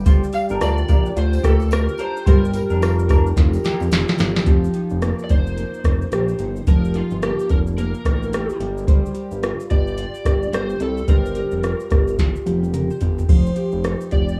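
A loping 109 BPM groove with a 16th-note swing drives this mellow, hazy bedroom-pop excerpt in G minor, built on a soft vintage rhythm box with a deep kick, crisp snare and metallic hats, up front and tape-softened, plus a thick, detuned sawtooth bass and a fingerpicked nylon-string guitar that wobbles with chorus and warbly pitch drift. An overdriven slide guitar carries the melody from 0.3 seconds through chorus and analog delay, while a twangy clean electric guitar and a jingly tambourine in the background drop out by 4.5 seconds, where a drum fill marks the move from Gm7 to F9sus4. The mix sounds like a rough home demo, dry and close with a small-room feel.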